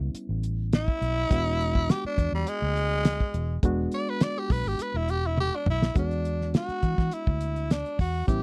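A straight-eighth soul blues groove in 4/4 at 103 BPM, swaggering and soulful, moving in E mixolydian from A7 to E7 at 1.3 seconds. A damped 70s drum kit sits up front with a fat snare and tight kick across hi-hat and toms, and drops in a fill from 5.4 to 6.0 seconds before the music shifts into a new section. A vintage muted fingered electric bass gives a dark, round, punchy low end, while a barky reed electric piano, lightly overdriven through its built-in speakers, comps in a bright, reedy voice in the middle register. At 0.7 seconds a growling tenor saxophone takes the lead, raspy and gritty with vibrato, soloing in a jazz style. The sound is dry and close, like a 1970s studio session, and the clip is cut from a longer piece.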